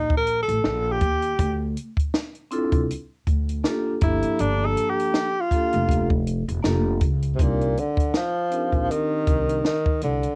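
A breathy tenor saxophone solos with subtone, vibrato and scooped notes over woody pizzicato upright bass and a dry compact cocktail kit with a punchy kick and high-tuned snare, while soft-mallet vibraphone rings in at 2.5 seconds in this cool, smoky, swung jazz-hop fragment at 80 BPM in C dorian, its saxophone carrying a cassette-tape tint within a light-reverb home recording.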